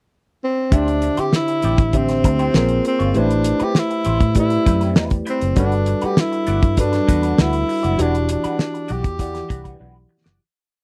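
A breathy tenor saxophone leads this romantic, smooth piece of lush 1970s-style soul, entering in the short pickup bar with jazz-style hook phrases marked by scooped notes, light vibrato and a silky top. At 0.7 s the band arrives: a damped drum kit sits up front with a fat snare and tight kick in a mid-tempo soul groove, while a dark, foam-muted fingered electric bass plays a round, punchy melodic line dotted with ghost notes. A reedy electric piano lays down clean, spread chords that halve the chord rhythm, and in the background an electric guitar through a small old amp, slightly broken-up and compressed, picks soft sixteenth-note rhythm figures through a wah pedal. The harmony moves through lush extended chords, from D9sus4 to Bbm9, Am9, Gmaj9 and Em9. The dry, close studio sound keeps every part intimate as the music fades out from 8.0 s, with a drum fill closing the piece at 9.8 s.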